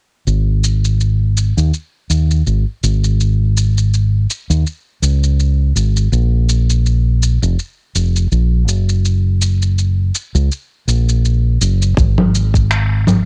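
From 0.3 s, a dark, round, punchy fingered electric bass sits up front with tube saturation, alongside a softer bed of electronic shaker, congas and finger snaps in a small room with a cassette-tape tint. This autumnal, wistful folktronica moves at an unhurried 82 BPM in 4/4, with a gentle 56% swing on the sixteenths, and the home-cassette recording keeps the sound close and dry. At 12.0 s a tight electronic kick drum steps forward briefly, marking a short closing turn in this fragment of a longer piece.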